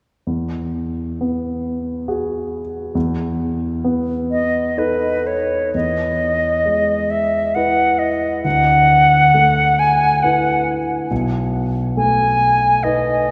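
This classical, impressionist duo for flute and grand piano drifts in a dreamy, pastoral mood at a slow 66 BPM in 3/4, with uneven beats and rubato that keep the pulse loose. The concert grand enters first at 0.3 seconds as accompaniment in E major, its intimate, natural tone carrying deep bass, long sustain and audible action noise. At 4.3 seconds the silver concert flute takes the melody, its pure, metallic voice shaped with vibrato and tongued notes, sitting slightly louder than the piano. Harmony moves from Eadd9 and B7/E to Emaj7, then through D69 to a close on B6, giving the second half a hazy, colorful shift. A cathedral reverb with a long 4.8-second tail surrounds both instruments, lending the church or concert hall setting a soft, suspended glow as this passage, cut from a longer piece, ends at 13.3 seconds.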